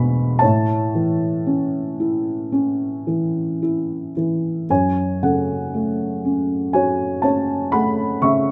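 Classical solo piano in a wistful, melancholic vein, this brief excerpt has a felt-muted upright piano play a lyrical, rubato line alone, its soft, boxy, thick-felt tone sitting intimate and up front under close, detailed microphones and light reverb, and the harmony darkening from A major to F# minor at 4.7 seconds.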